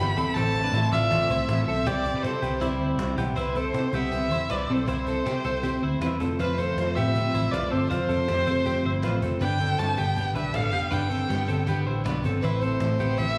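This cut from a longer piece of jangly indie pop opens with a dark, nasal violin carrying the melody up front, joined at once by a full-bodied jumbo acoustic guitar, a clean, compressed twelve-string electric guitar playing arpeggios, and a round, foam-muted vintage electric bass. A snappy cajon with snares, struck with hard hands, enters at 0.2 seconds and sits distant in the background as though heard in a large room. The mood is breezy and bright, moving at 159 BPM in a straight 4/4 in C major, with the harmony running from A minor through C, F and G before returning to A minor. The bowed violin is expressive and boxy, with vibrato and portamento, and it is coloured by slapback echo and digital delay. The twelve-string carries its own slapback echo and a warbly pitch drift, while the picked acoustic guitar adds a warm bed beneath it. A lush hall reverb and a small room ambience give the mix a big arena sound with studio reverb, and vinyl crackle runs through it.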